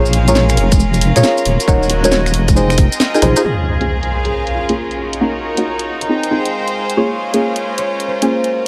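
Swung two-step garage drums with a cracking snare, rim clicks, finger snaps, congas and hi-hats drive this bouncy, late-night UK garage clip over a deep, saturated wobbling bass that stops at 3.3 seconds, joined early by a tight electronic kick and grainy cabasa, while mellow, nasal chord stabs with chorus and delay, a biting violin section and a floating, distant string section hold Bbm7, Ebm7 and Fm7 before a short drum fill and an up-front impact at 3.4 seconds usher in a ringing, thumb-plucked concert harp melody as a filter sweep plays over the stabs.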